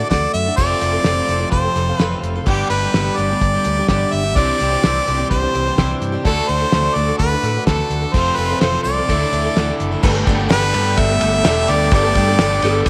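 Hopeful and open-road in spirit, this short cut from a longer folk rock and heartland rock piece moves at 127 BPM in a straight 4/4, in G major. A bright harmonica carries the melody up front with light vibrato and scooped notes, touched with tape echo. Beneath it sit a shimmering, octave-doubled twelve-string acoustic guitar and a crunchy, double-tracked overdriven guitar riff. A round fingered electric bass and a cloth-damped, thuddy drum kit with a fat snare, tight kick and dark cymbals hold the groove under chords such as D, F, G and Cadd9. At 10.0 seconds the music opens onto a Gadd9 chord as a woody upright piano, a tonewheel organ with key click and rotary speaker, and a grainy tube shaker slip in very quietly. A slightly broken-up electric slide guitar appears at 12.6 seconds just before the cut ends, and the recording sits in light reverb with a small room ambience.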